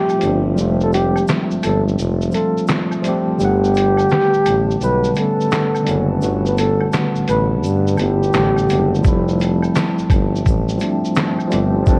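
A breathy, dark flugelhorn sings a scooped, lightly vibrato jazz melody over a tine electric piano, a deep moody analog pad in the background, a warm up-front tuba bass, a muffled, compressed sampler-style drum kit with thumpy kick, fat snare, hi-hat, shaker and handclaps, and faint woodblock and tube shaker in this dreamy, mellow lo-fi hip hop excerpt at 85 BPM in F major, where the flugelhorn drops out at 9.0 seconds as the chords return to Fmaj9 and the whole mix carries the warble of worn old cassette tape.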